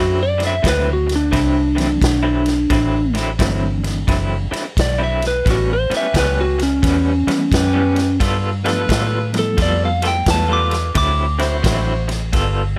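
A lightly driven lead guitar, picked and slightly broken-up, carries the melody in this soulful, gritty electric blues shuffle in D mixolydian at 87 BPM. It sits over a lo-fi, compressed riff from an electric guitar through a small old amp with tremolo, and a dark, round, foam-muted fingered bass placed up front. A swinging big-band drum kit with punchy kick, ride and snare sounds distant and roomy, while a reedy, worn electric piano with fast tremolo and a slightly out-of-tune tone joins at 1.8 seconds, and a clear, present saxophone section adds jazz-style stabs with vibrato from 5.9 seconds, all moving through D9, A9, G9 and back to D9 in a dry mix cut from a longer piece.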